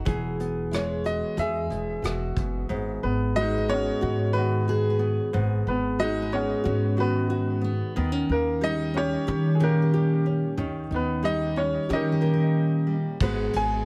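An acoustic folk-pop ballad in 4/4 with a straight feel, this intimate, heartbroken excerpt is cut from a longer piece. A bright upright piano carries the melody up front, its woody, open tone trailed by tape echo, while a fingerpicked nylon-string guitar sits equally close with classical-style accompaniment. A picked steel-string acoustic guitar adds full-bodied jumbo arpeggios lower in the mix, and a pizzicato upright bass gives the low end a woody, warm pulse. Soft brushes on a distant, roomy kit with dark cymbals and a tight kick play from 0.1 to 2.5 seconds, then return briefly at 13.2 seconds. The harmony opens on Eadd9, moves into G#m7, leans on D#7 and settles back on G#m7, all framed by a light reverb.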